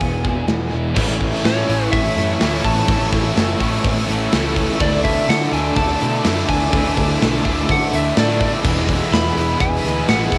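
Cut from a longer piece, this hazy home cassette recording sits in studio reverb, with a gated 80s drum kit up front whose punchy kick, medium-tuned snare and bright cymbals ring in a stone room. Layered shoegaze and dream-pop guitars fill the background: a dark, thick fuzz riff with analog chorus, a lo-fi garage riff with overdrive and reverse reverb, a very quiet arpeggiated guitar at the edge of break-up, and, from 0.9 s, a biting, double-tracked overdriven riff, all over a round, foam-muted picked bass. A compressed, lightly driven lead guitar carries the dreamy melody through cassette tape and tape echo, while from 1.0 s a very quiet, detuned sawtooth pad with filter swells and chorus sustains chords as the harmony moves from E to A, Dsus2 and back to E.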